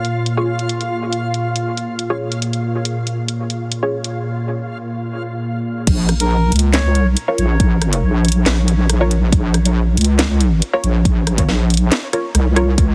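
This meditative, heavy deep dubstep excerpt opens with a tense, string-like drone under a filter sweep, a reversed, dreamy swelling texture, and a garage drum kit with a cracking snare and tape-warm character, while muted dub chord stabs sound through phaser and dub echo. At 5.9 seconds the half-time drop arrives: a saturated, square-wave wobble bass sits up front with a deep electronic kick, and a reedy, breathy melodica appears briefly through its own echo before the stabs return at 7.3 seconds. The mix carries a heavily compressed, radio-like sound with light reverb.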